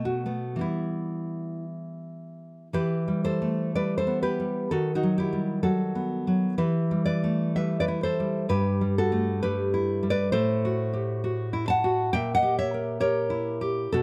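A passionate, melancholic romantic piece for solo nylon-string guitar in E minor unfolds in a rubato 2/4 at 54-70 BPM, its fingerpicked, full-bodied tone sitting up front in a close, detailed recording with light reverb as it moves from a B7 opening through Em to an A#dim7 near 12.1 seconds in this excerpt cut from a longer work.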